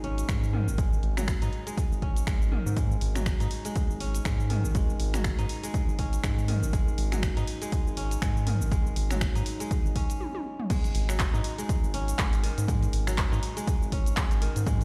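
Afro house at 121 BPM with a driving, hypnotic swing: a bright, ringing fingerpicked kora plays filtered, delayed arpeggios that pump against the kick, over a round, deep, wave-folded analog bass with tube saturation sitting on a G#5 chord, while an overdriven deep house kit of hi-hat, shaker, snaps, handclaps, toms and crash plays from the start and a punchy electronic kick joins it at 0.3 seconds, all heard as if through a big sound system in a bare stone room, with a drum fill and stop at 10.2 seconds giving way to a drop at 10.7 seconds in this cut from a longer piece.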